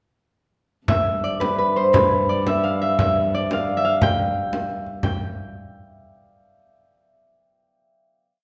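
At 0.9 s a concert harp, a viola da gamba and a frame drum begin together in this short, festive and rustic medieval dance in G mixolydian, tuned to A4 = 441 Hz. The fingerpicked harp carries an ornamented modal melody between B4 and G5, its ringing acoustic tone placed up front. Beneath it, a single player bows a fretted viola da gamba on a low G2 drone, with a reedy gut-string colour, a smooth top and light vibrato, sitting lower in the mix. The frame drum, also up front, plays an evenly spread pattern in 6/8 with hard hands and a compressed, saturated sound. The dance starts at 116 BPM in dotted quarters and speeds up throughout, arriving at a final note at 5.0 s, while the harp rings on until 5.5 s in the wet reverb of a church or concert hall.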